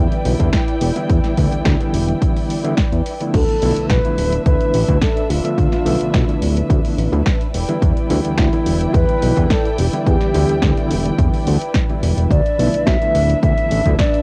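This groovy, cosmic nu-disco excerpt at 107 BPM opens with an overdriven, gritty electric piano with a reedy edge and medium tremolo, played through a combo amp and filtered, alongside dark, woody bowed strings holding lush sustained chords and a fat, saturated sawtooth bass sitting up front. The house drum kit comes in almost at once with a punchy snare, warm hi-hats and crash cymbal, and a punchy electronic kick joins at 0.4 seconds, both layered and tape-warmed. The piano and strings pump against the beat, giving the harmony a breathing pulse as it moves between Em7 and Dm69. At 3.3 seconds a mellow, hollow silver flute enters with the melody, its airy, tongued tone carrying vibrato and a trail of tape echo. Light reverb and a cassette home-recording character give the whole piece a lo-fi haze.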